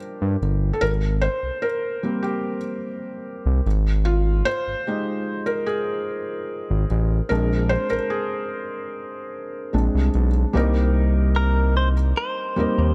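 A light reverb lends this dreamy, smooth contemporary R&B excerpt a soft sheen, with a slow 74 BPM pulse in straight 4/4. A felt-muted upright piano opens the piece, soft and intimate with a vintage character and audible action noise, voicing a rootless Ebmaj7 before settling through Abmaj7, Abmaj13 and Bb7. At 0.2 seconds a synth bass joins, up front and mellow, its sawtooth and square-wave tone sustained with vibrato and an evolving quality. The harmony turns to Cm7 at 10.5 seconds, and at 11.4 seconds a direct-recorded clean electric guitar slips in with a short, picked, compressed melody, its notes trailed by tape echo. The fragment stops at 12.9 seconds, as it is cut from a longer piece.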